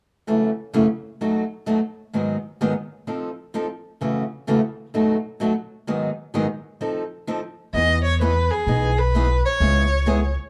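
A dark, warm production in a moderate club reverb frames this lively, playful fragment of acoustic string swing in E major, moving at 129 BPM with a swung 4/4 feel. A boxy, picked steel-string acoustic guitar opens alone at 0.3 seconds, cycling through F#m7, B7, G#m7 and F7 chords. At 7.7 seconds the music settles onto Emaj7 and then C#m7 as a woody, thumpy pizzicato upright bass with gut strings joins, along with an expressive bowed violin, rich in vibrato and portamento, that sings the melody through a plate reverb.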